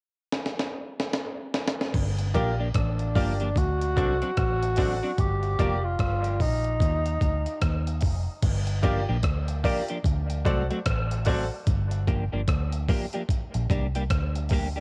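Hypnotic and heavy, this dub reggae cut in G minor moves at 74 BPM, opening on a drum fill from a gritty, thumpy sampler-style breakbeat kit with a high-tuned snare. A dark, round, foam-muted fingered bass joins at 1.9 seconds, followed by brilliant grand piano stabs and a clean, chorused electric guitar, both steeped in dub echo and cassette tape. A breathy tenor saxophone carries the melody with light vibrato from 2.8 to 8.0 seconds, also treated with dub echo and tape, and the whole piece sits in a lo-fi home cassette recording with light reverb.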